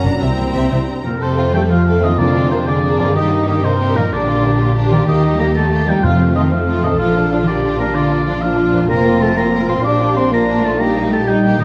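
A smooth, vibrato-laden violin section carries the melody in this triumphant, adventurous stretch of heroic film score at 125 BPM in 12/8, with a focused second violin line sitting very quietly beneath and a lush viola section with expressive portamento filling out the accompaniment. A distant, roomy oboe enters at 1.1 s with its own line, while mellow French horns and very quiet, bright trombones hold sustained chords, a ringing, fingerpicked harp spins arpeggios, and a rich double bass section joins a soft-attacked chamber cello section to anchor the low end. Articulate hard-mallet timpani strike in the background at 2.2 s and 6.0 s inside a moderate scoring-stage reverb, as the harmony moves from C7 through F and Bb to close on Eb over Bb.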